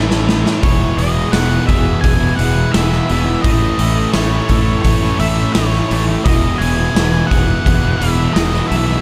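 A gritty garage drum fill, punchy and up front in a pumping stone room, opens this wistful, hazy shoegaze and dream pop excerpt, over a growly fuzz bass and a thick wall of picked guitars: a bright, double-tracked overdriven riff, a hollow-body riff trailed by reverse reverb, a dark fuzz riff tucked very low, and faint, slightly broken-up arpeggios. At 0.6 seconds a dark octave-fuzz lead guitar enters with a melody carried by digital delay, while a very quiet vintage string machine shimmers and warbles with sustained violin chords. The harmony sways between A and Emaj7, and the mix stays dry and close.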